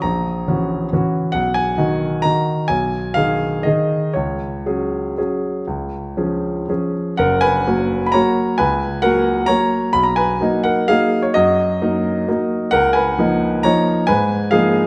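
A solo grand piano, polished and up front, opens this graceful, playful classical waltz in F# major, moving in 3/4 with a rubato feel between 115 and 144 BPM across a span from F#1 to B5. The phrase is stated and then repeated from 7.2 seconds, its harmony passing through F#7/A#, B, G#m/B and a C#sus4 resolving to C#, later reaching Bmaj7 and a closing C#13. A moderate recital-hall reverb surrounds the present, warm tone in this short fragment of a longer piece.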